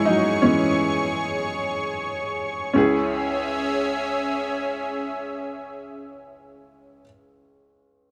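Pop, earnest and bittersweet, this short passage from a longer piece opens with a woody, boxy upright piano playing accompaniment up front, slowing down over the first 2.8 seconds before the music moves into a new section. A lush, detuned sawtooth pad with chorus sustains thick chords in a higher register alongside it, ending at 7.0 seconds while the piano continues until 8.1 seconds. A moderate large studio reverb surrounds both parts.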